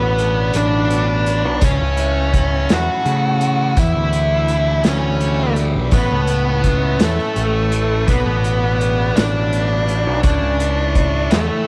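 A lightly reverberant, vintage-toned psychedelic rock excerpt in a slow, straight 6/8 at 56 BPM, dark and trippy, where a dark, picked octave-fuzz lead guitar with slapback echo carries the melody up front over a growling, overdriven picked bass, a double-tracked fuzz guitar riff with phaser sitting in the background, buzzy combo organ chords washed in spring reverb, a punchy, rolled-off vintage drum kit with hi-hat, kick and snare in a small pumping room, and a very quiet jingly tambourine, all moving through Bm, A/C#, Em7 and A.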